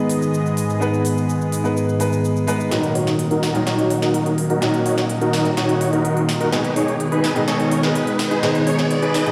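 Anthemic and uplifting, this festival progressive house excerpt moves at 126 BPM in a straight 4/4, opening on G#m with a clear, up-front concert grand piano and a lush, chorused unison pad of detuned sawtooth tones holding sustained chords. A big-room electronic drum kit enters at 0.1 seconds, layered and overdriven, with a punchy snare, crisp hats and cabasa sitting lower in the mix, while the piano's dub echo trails behind its accompaniment. At 2.7 seconds the harmony shifts to D#m and a build-up begins, bringing a drum fill, a thick, menacing detuned saw bass kept very quiet, and a huge, euphoric supersaw lead riff that is airy and compressed, coloured by cassette tape character, dub echo and a filter sweep. A background riser joins at 5.1 seconds, and the chords return to G#m at 6.5 seconds as the build continues. The whole piece sits in a moderate lush hall reverb and sounds as if played on a big sound system in a bare stone room.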